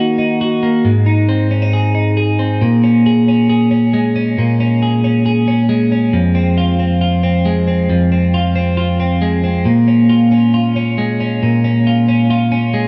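Wistful and bittersweet, this short indie pop passage, cut from a longer piece, moves at 136 BPM in a straight 4/4. A lone twelve-string electric guitar carries everything, its clean, picked tone bright and twangy, compressed and placed up front. The harmony opens on Ebm and Ab before settling at 2.6 seconds into a longer stretch that circles through Bbm7, Fm and back to Bbm7. The guitar ranges from F2 to Ab4, its doubled strings giving the chords a shimmering fullness. A moderate plate reverb with a long tail surrounds it, and the overall production leans dark and warm, framing the guitar's bright edge in a dusky glow.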